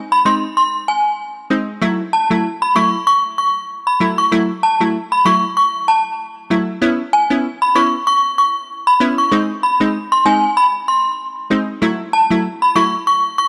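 A mellow FM synth chime opens at 0.1 s, its inharmonic, ringing tone shimmering with ensemble chorus and tremolo as it carries the high melody. It is joined almost at once by a crisp, digital wavetable chord stab with a filter pluck and short decay, and both parts sit up front in this tough, bouncy dancehall excerpt with a swung sixteenth-note feel, moving through F#m7, C#m7 and G#. The gritty hardware recording is dry apart from light reverb, and the stab stops at 13.0 s while the chime continues until 13.5 s.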